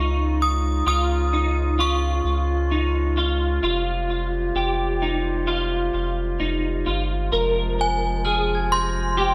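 A chiming, inharmonic synth chime carries the melody through this hazy, ethereal dream pop excerpt in F minor at 65 BPM, its ringing tone thickened by ensemble chorus, tremolo and digital delay, while a clean, hollow-body electric guitar picks arpeggios through the same chorus and delay. Beneath them a round, deep analog bass sits up front, a distant woodwind section holds dark, softly vibrato-tinged chords, and a metallic, bell-like glockenspiel glints in the background from 0.9 to 2.3 seconds and again from 8.2 seconds. The harmony moves from Dbadd9 to Fmadd9 at 3.6 seconds, all set in a moderate scoring-stage reverb with small-room ambience.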